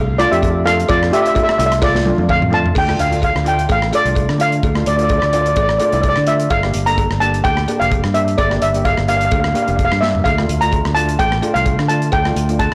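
A lightly swung 128 BPM calypso groove in 4/4 drives this intense, dramatic excerpt in D minor, moving from Dm to Gm7 at 6.5 seconds and back to Dm at 10.3 seconds, with drum fills around 1.8 and 10.0 seconds. An up-front, mellow double-seconds steel pan carries the melody over a round, amped fingered electric bass with transformer saturation, while a bright, close-miked cello pan played with hard rubber sticks fills in the accompaniment. A tight-kicked studio drum kit with bright cymbals and soft-clipped snare, plus a compressed cowbell sitting in the background, sits in moderate stage reverb, and the whole recording sounds blown-out and overdriven.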